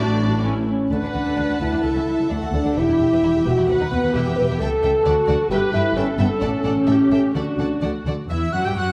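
A roomy scoring-stage reverb and vinyl crackle frame this lively, spirited fragment of a quick classical-period orchestral movement in D major at 130 BPM in 2/4, where a background violin section carries the melody over a close, focused second violin line, smooth viola accompaniment, woody cellos and soft-attacked double basses, while a mellow horn section sits up front with sustained chords until 7.8 s and an airy, bright flute appears only at the opening and again at 8.3 s.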